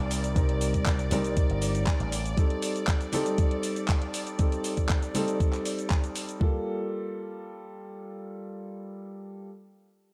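This cosmic, sleek nu-disco fragment opens with a concert grand piano playing accompaniment, a dark studio string section holding sustained chords, and a bright, punchy slap bass through an envelope filter that drops out at 2.3 seconds. The piano sits up front with deep bass, a boxy body and long sustain, shaped by sidechain pumping, a low-pass filter and delay. The bowed strings, played sul tasto with light vibrato and a soft attack, stay intimate and smooth on top while also pumping under the sidechain. A layered pop kit of handclaps, shaker and metallic hi-hats enters first, soon joined by a thumpy, sampler-style electronic kick with a tape-tinged character that drives from the front, both carrying studio reverb, while bright, compressed congas played with soft hands sit in the background. The harmony moves from Cm7 to Am7b5, then at 6.4 seconds the drums and strings fall away, leaving the piano alone on a Gm9 chord until it stops at 9.5 seconds, all within a small room ambience.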